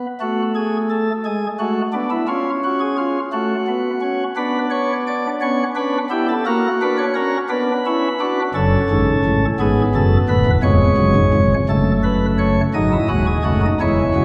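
Serious and solemn, this short passage from a longer baroque-style classical piece is a four-part fugue for solo pipe organ in 6/8 with a straight feel. The organ plays from 0.0 to 14.2 seconds on its flute stops, with a light, bright, baroque voicing, a distinct chiff, and a sparkling character that sits up front. Its range spans D1 to D#5, so deep pedal tones sit beneath the glittering upper lines. The harmony moves through colours such as F#m/A, G#m7b5 and C#, and it settles on F#m before a bare G#5 chord opens a new section at 12.8 seconds. A wet church reverb with a 2.8-second decay surrounds the organ, giving the recording the spacious resonance of a church or concert hall.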